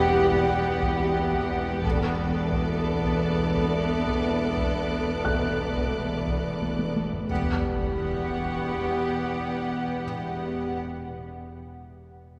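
Bowed strings and a distant, mellow French horn section open this eerie, tense suspense film cue at 88 BPM in E minor. A lush violin section carries the melody over a smooth second violin line and an intense viola section, while cello and double bass sections hold the bass in the background; an ethereal, detuned pad eases in, a taiko ensemble sounds from further back, a higher, focused violin section adds rich texture, and a soft felt-muted upright piano with audible action noise appears briefly. After a drum fill, an impact at 7.3 seconds brings a huge sub drop and barely audible timpani as the harmony returns to Emadd9, the ensemble heard from deep in a cathedral-like reverb in this passage cut from a longer piece.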